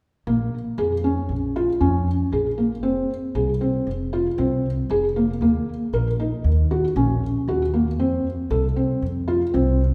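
Set in an uneven five-beat metre with a straight feel, this contemporary chamber piece is pensive and restless. A felt-muted upright piano plays arpeggios in its middle register, its tone soft, mellow and intimate, with thick felt and audible action noise giving it a vintage character. An upright bass plays the bass line in pizzicato, sounding woody and dark on steel strings. Both instruments sit up front and play together from 0.3 seconds to nearly the end, over a harmony that moves from a minor chord through open fifth chords. The sound is steeped in the wet reverb of a recital hall, as if heard in a church or concert hall, and the passage is cut from a longer piece.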